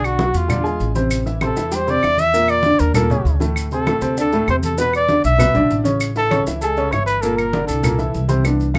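Sunny and sophisticated, this brief Afro-Cuban jazz passage moves at a brisk 196 BPM in a straight 4/4, cut from a longer piece. A dark trumpet sits up front carrying the solo melody with light vibrato and scooped notes in a jazz style, stopping at 8.2 seconds while the band plays on to 8.8 seconds. Beside it, a woody, natural upright piano supplies warm accompaniment across a broad range, while a pizzicato upright bass with steel strings anchors the low end with a warm, woody tone. Ringing, medium-tuned congas and close, woody claves sit in the background, and grainy, band-limited maracas add a mellow, vintage shimmer. The harmony shifts restlessly through chords such as Bm, E7b9, Bbadd11 and Amaj7 before settling on C6, all within light reverb.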